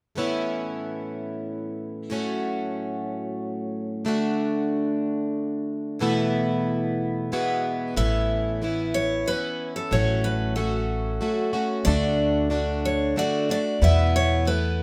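In a three-four with a straight feel, this hopeful folk excerpt opens with a plugged-in twelve-string acoustic guitar picked alone from 0.2 seconds, its octave-doubled strings giving a shimmering, concert-ready brightness. The harmony moves through Aadd9, F#m/A, D and Esus4, resting briefly on Eadd9 before the progression comes around again. At 8.0 seconds a dreadnought steel-string acoustic guitar takes up the melody in a higher register, full-bodied and picked, with audible finger squeak. An upright bass enters at the same moment, played pizzicato on steel strings with a woody, dark, growly tone that anchors the low end. All three parts sit up front with little reverb, and the passage, cut from a longer piece, breaks off at 14.8 seconds.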